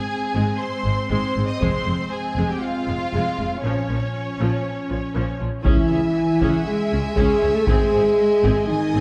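A dark, warm concert-hall sound frames this heroic, relentless epic orchestral film cue at 119 BPM in C# harmonic minor, where a distant, lush violin section carries the melody over a focused second violin line, clear violas, dark sustained French horn chords, smooth cellos and a bowed double bass section, while a heavy-sticked taiko ensemble strikes at 1.6 seconds and returns at 5.7 seconds alongside a very quiet, mellow tuba.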